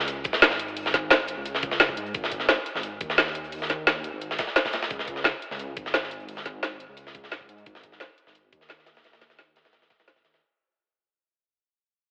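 Soulful and rolling, this liquid drum and bass cut from a longer piece moves at 174 BPM in a straight 4/4, filtered through a telephone-like tone and a lush hall reverb while a fade-out runs across its full 10.4 seconds. A dark detuned saw bass rumbles deep beneath, its beating sawtooth edge warmed by tube saturation, while an overdriven electronic kick knocks from 0.2 seconds. Up front, a produced drum and bass kit with a woody snare and bright hats sits beside a mid-forward acoustic kit of big-room character and a medium-tuned snare.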